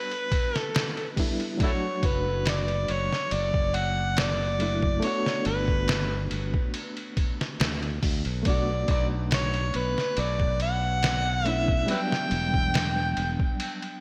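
Dark and smoky, this trip hop excerpt moves at a straight 70 BPM in E dorian. An overdriven, gritty harmonica carries the jazz-style solo melody up front with tape echo, light vibrato, tongue slaps and scooped notes, over a reedy electric piano that adds tremolo and 12-bit sampler grit through its built-in speakers. A muffled, pitched-down sampler kit with a thumpy kick and gated reverb sits up front, a bright, growly fingered bass enters at 2.0 s, and the chords pass through Em7, D/F#, Gmaj7 and Bm7 in a lush hall with bright 1980s-style digital production.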